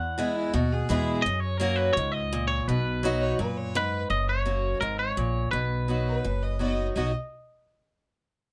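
Honky-tonk and classic country in a straight 4/4, easygoing and nostalgic, heard in a short cut from a longer piece. A twangy electric guitar carries the melody up front, bright and clean with a compressed, picked attack and a touch of tape echo, stopping at 6.6 seconds. Beneath it, a picked acoustic archtop guitar supplies the accompaniment with audible finger squeak, while an upright bass on gut strings gives a woody, thumpy pizzicato foundation. A clear fiddle enters at 0.4 seconds with a second line, bowed by one player with light vibrato and a biting, earthy tone, set distant behind the other parts. The close, detailed recording carries light reverb, and the chords move from E through F# to B before returning to F# and B.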